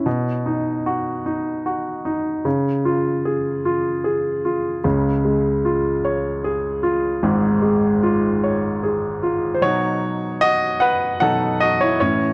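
In a slow, straight 6/8 at 50 dotted-quarter beats per minute, a lone baby grand piano carries this melancholic, aching pop fragment, ranging from G#1 up to F#5 and moving from B to C# before settling on Badd9 at 9.6 seconds. The piano sits up front with a warm, present, polished tone and short sustain, surrounded by a moderate plate reverb in a dark production. Heard as a passage cut from a longer piece, it runs about 12.3 seconds.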